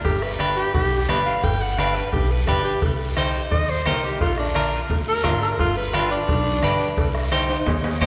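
Drenched in the long, wet reverb of a church-like hall, this fiery, driving cumbia fragment puts a growling, breathy alto saxophone solo up front over a bright, clean semi-hollow electric guitar with spring reverb and woody pizzicato upright bass. A soft-beaten bombo, ringing cowbell and timbales, and low-tuned congas sit tucked in the background alongside a raspy guiro, with the saxophone stopping at 7.1 seconds just before a drum fill at 7.5 seconds closes it out.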